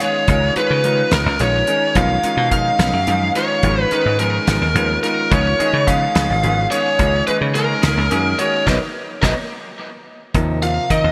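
A bright, 1980s-style digital sheen and a lush hall reverb frame this short cut from a longer electric jazz fusion piece, driving and nocturnal in mood and set in a straight 6/8. Up front, a biting, overdriven lead guitar carries the melody in a warm, picked voice. Beneath it a clear concert grand piano with deep bass supplies open accompaniment, while a clean, twangy, scooped electric guitar sits in the background with compressed stabs treated with ensemble chorus and delay until 9.3 seconds. A damped 70s drum kit with a fat snare and tight kick is dressed in gated reverb, and a dry, foam-muted thumbed slap bass enters at 0.3 seconds, punchy and direct. Lush extended chords such as C#13 and Bmaj9#11 colour the harmony before the band hits an accent from 8.7 seconds, with the drums and piano joining in a fill that leads to a closing Ebsus2.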